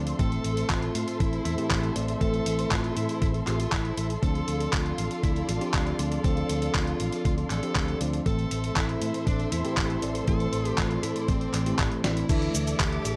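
Italo disco in D minor at 119 BPM, this short excerpt from a longer piece carries a bittersweet, nostalgic mood over a straight 4/4 pulse. A thumpy electronic kick anchors the groove alongside a dusty, sampler-style soul kit with a fat snare, handclaps, hi-hat, cabasa and crash cymbal, the kit sounding compressed and gritty in a large room. A fingered electric bass with tube saturation holds the low end, while a bell-like tine electric piano adds bright, clean stabs. A studio string section sustains chords above with vibrato and portamento, smooth and expressive, as a dark fuzz lead guitar picks out the melody through distortion and tape echo. The harmony moves from Am to Dm7 at 4.2 seconds and back to Am, a drum fill arrives at 12.0 seconds, and the passage closes on Dsus2 with a dry, hardware-recorded character under digital ambience.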